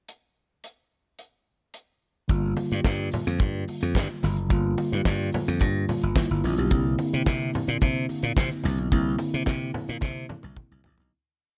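A four-on-the-floor beat at 109 BPM from a damped, dry 70s drum kit, with a fat snare, tight kick and open hats on the off-beats, opens this driving, danceable disco piece in G dorian, and at 2.3 seconds the pickup bar gives way to a groove where a growly, punchy slap bass plays a syncopated line with chromatic approach notes and a mellow tine electric piano holds drop-2 voiced chords over Gm7 and C9 with short fills, while from 2.6 seconds low-tuned, ringing congas sit in the background with a slap on two and open tones on four, before the track fades out from 8.9 seconds under a drum fill at 10.0 seconds.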